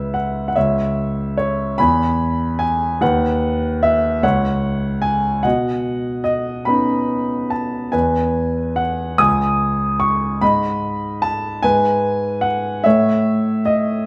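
A solo grand piano sits up front in this peaceful, calm classical fragment, its intimate tone carrying a boxy edge, long sustain and audible action noise. The playing is lyrical and rubato, moving in a slow 6/8 at 49 BPM in dotted quarters and centred on E major. The piano spans from C#2 to D#6, and its harmony opens on C#m7 before settling on E and passing through B/D# and Badd9. Later the chords turn toward G#m and G#m7, closing on A at 12.8 seconds as the passage, cut from a longer piece, breaks off at 14.1 seconds. A moderate recital hall reverb surrounds the instrument with a gentle, lingering space.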